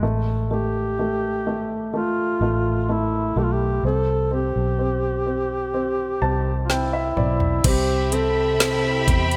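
An upright piano with a woody, polished tone and a foam-muted, round electric bass open this emotional pop ballad excerpt, moving from F/A to Cmaj7 under a longing mood. Moments later a mellow duduk takes the solo melody up front, its folk-style phrasing full of vibrato and scooped notes. The piano plays a fill before a smooth R&B drum kit arrives at 6.7 seconds with its own fill, bringing a knocking kick, metallic hats and a woody snare to the foreground. As the music opens into a new section at 7.6 seconds, a twangy, compressed twelve-string electric guitar picks arpeggios in the background through lush chorus and digital delay, and a dark studio string section enters at 7.7 seconds with expressive, bowed sustained chords. Light reverb surrounds the bright, 1980s-style digital production.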